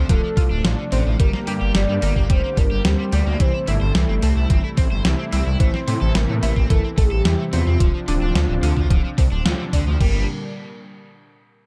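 A nostalgic, nocturnal synthwave piece at 109 BPM in G dorian opens with a round, triangle-based synth lead carrying the melody through chorus, phaser and tape echo, over a smooth detuned pad that pumps under sidechain, a bright overdriven picked guitar riff, and a thick, saturated unison saw bass sitting up front. From 0.1 s a sub-octave analog pluck adds arpeggios in the background, while a tape-warm drum machine with a fat snare, hi-hat and crash joins a thumpy electronic kick, both re-recorded in a small room. The chords move from Dm7 through Gm and C6 and back. The whole band hits an accent at 9.5 s before the piece turns to a new section at 10.0 s, all under light reverb and a dark production.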